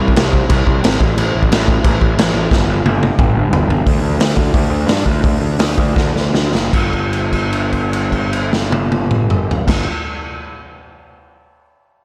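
A dry, up-front punk rock excerpt, upbeat and rebellious, driving in 4/4 at 150-179 BPM with a straight feel. A growly, overdriven fuzz bass played with a pick rumbles in the low register beside a raw garage drum kit that sounds dark and smooth, with a punchy kick, a medium-tuned snare, a rolled-off top and a bright stone-room character, adding crash, hi-hat and toms. A drum fill arrives at 2.5 seconds, the tempo slows down from 3.9 seconds, and a held note rings out from 6.7 seconds to close the cut.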